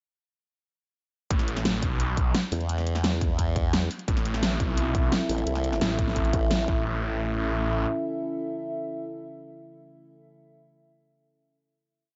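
A snarling, distorted saw bass leads this dark, futuristic piece of technical drum and bass at 173 BPM. It opens the drop at 1.3 seconds with aggressive, growling, chopped phrases: detuned sawtooth in unison, compressed and bright. A formant-filtered wobble bass joins with chorus-treated, modulated phrases of its own. Beneath them, a punchy, layered electronic kick and a tight dubstep kit, with closed and half-open hi-hats and a huge snare, hold a straight 4/4 with a broken-beat kick. A deep, nasal analog pad built from detuned square, sawtooth and triangle waves with a sub octave swells in slowly under lush chorus and sidechain pumping, and moves from A minor to A major at 6.7 seconds. The pad outlasts the other parts, sustaining through the final hit until 10.4 seconds, in light digital reverb with a dull top end.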